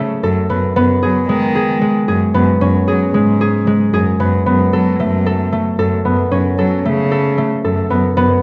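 This contemporary instrumental piece is an 8.4-second fragment cut from a longer work, urgent yet pensive, moving in 7/8 at 226 BPM counted in eighths with a straight feel in F# dorian, tuned to A4 = 442 Hz. A concert harp sits up front with fingerpicked arpeggios between G#3 and A4, its acoustic tone mellow and ringing. Beneath it, a single bowed cello holds the bass from F#2 to F#3, played sul tasto with a soft attack, a pure, floating sound that feels somehow distant even though it sits forward in the mix. The harmony passes from F#m through G#m/F#, C#5/F# and B5/F# before returning to F#m at 6.3 seconds, all over a steady F# foundation. The whole sound is bathed in a moderate recital hall reverb and coloured by worn cassette tape, whose warbly pitch drift gives the performance an aged, wavering quality.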